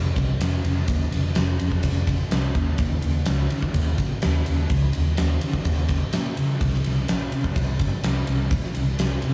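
Rock rhythm at 126 BPM in a straight 4/4 drives this brooding, melancholic excerpt of shoegaze and dream pop, cut from a longer piece. A vintage muted fingered electric bass opens at 0.0 s, its dark, foam-muted, round tone amped and ranging from F1 to Eb3. The huge arena drum kit joins at 0.2 s with a punchy kick, a fat snare and bright ride cymbal, sitting up front with a pumping hall room around it. The two parts run together as a single section until 9.3 s, balanced at an even level against each other. Apart from the drum kit's hall, the overall sound carries little reverb.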